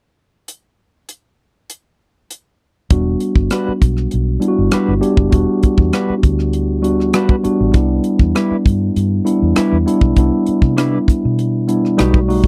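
A dry, close 1970s-style studio sound frames this bittersweet, cinematic slice of lush soul, cut from a longer piece and set in a straight four-four feel. A polished funk drum kit opens alone, its hi-hat, tight kick and rim click sitting up front with an airy, acoustic edge. At 2.9 seconds a mellow tine electric piano enters, clean and heard through its built-in speakers, alongside a dark, round vintage bass that is fingered, foam-muted and amped. A clean, fingered electric guitar joins up front at 3.5 seconds with a dusky riff coloured by tremolo. The harmony rests on Em9 before shifting to Cmaj9 at 7.8 seconds.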